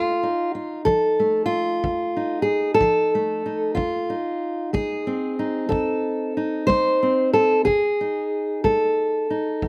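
Acoustic country blues with a gritty, rollicking mood, this short fragment of a longer piece rolls along in 12/8 with a straight feel. A fingerpicked steel-string acoustic guitar carries the melody from the very start, sitting up front with a warm, auditorium-sized body and a slapback echo trailing its notes. Its lines span from a low F2 up to C5, all over a single F7 chord. At 0.9 seconds a kick drum joins underneath, set well back in the mix with a dark, smooth, punchy tone, a studio-room character and a brushed touch. The overall sound is dry and open-air, recorded outdoors with little reverb, leaving the guitar close and present.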